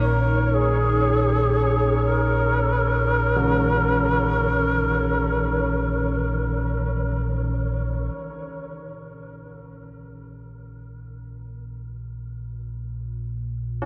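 Desolate and unsettling, this dark ambient drone fragment in free time pairs an airy, reedy shakuhachi melody and clangorous old church bells playing arpeggios over a deep, ominous rumbling drone that runs throughout, a moody pad and a flickering grainy texture that both stop at 8.2 seconds, and a synth drone fading in from 8.2 seconds, all soaked in lush hall reverb with a cassette-tape haze.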